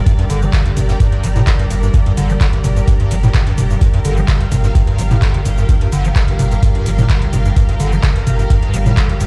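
A squelchy, resonant square-wave acid bass riff with overdrive, chorus, tape echo and sidechain pumping drives this hypnotic acid house excerpt at 128 BPM in G minor, held on a single Gm chord and set over an up-front overdriven electronic kick, a booming analog drum machine with metallic hi-hats, handclaps, shaker and toms, a very quiet brushed jazz kit on hi-hat and snare, a thick saturated sine sub bass, and lush, bright vintage string-machine chords with slow attack and ensemble chorus, all heard through a big sound system in a bare stone room.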